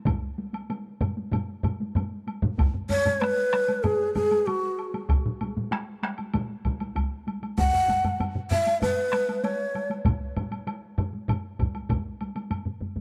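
A straight 4/4 pulse at 96 BPM drives this Japanese traditional taiko ensemble piece, gradually speeding up as the cut from a longer work unfolds. Four layers of taiko ensemble carry the rhythm: one struck with hard sticks in a live room, another with heavy sticks recorded close and dry, and two more with heavy sticks in a small room, one of them sitting up front. A woody woodblock sits quietly beneath the drums. At 2.9 seconds a breathy long shakuhachi enters with the melody in F# suspended pentatonic, ranging from F#4 to F#5 with a bamboo, end-blown tone. Its line is tongued and expressive, with vibrato, audible chiff and lifted highs, and it sits up front until 9.9 seconds. A moderate plate reverb and a dark, warm production give the powerful, driving ensemble a deep, resonant weight.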